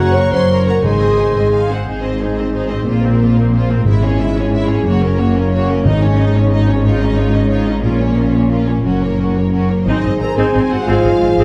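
Dark, warm recital-hall sound frames this heroic, triumphant cinematic adventure cue in a straight 6/8 at 120 BPM in Ab mixolydian, where a lush, vibrato-rich violin section carries the melody over a second, more distant and intense violin line, focused violas, punchy French horn chords, ringing thumb-plucked harp arpeggios and a bass of smooth cellos and up-front double basses, while a mellow clarinet and pure-toned silver flute add background lines at the opening and again from 9.9 s, and very quiet, dry timpani sound briefly near the start and again within the build-up that runs from 1.9 s to 9.9 s of this passage cut from a longer piece.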